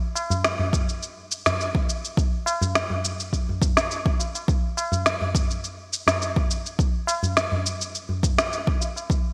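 Hypnotic and meditative, this short downtempo passage cut from a longer piece moves in a straight 4/4 feel built entirely from percussion. An electronic shaker and snare drum open at 0.2 seconds, the snare woody and up front, bathed in gated reverb. A high-tuned, ringing acoustic tabla enters at the same moment, carrying the sound of a small room. At 0.7 seconds a deep electronic kick drum joins, overdriven and re-recorded in a small room, sitting up front as the heaviest element. The whole is placed in a lush hall reverb with a bright, 1980s-style digital production sheen.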